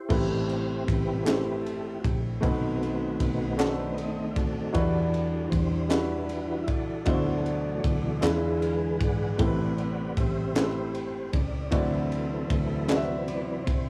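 Slow gospel in a straight 6/8, jubilant and soulful, where a smooth tonewheel organ with key click, slow rotary speaker and chorus vibrato takes the lead over a woody, short-sustained upright piano bathed in plate reverb and a round, foam-muted fingered electric bass. A gritty, saturated fusion kit sits up front in a pumping room sound with bright cymbals, a high-tuned snare and a punchy kick, colored by cassette tape, while close, dry group handclaps join from 1.3 to 13.3 seconds. The chords move through Am9, B7b9, Em9, D13 and E7b9, and a moderate small-room ambience frames this cassette home recording.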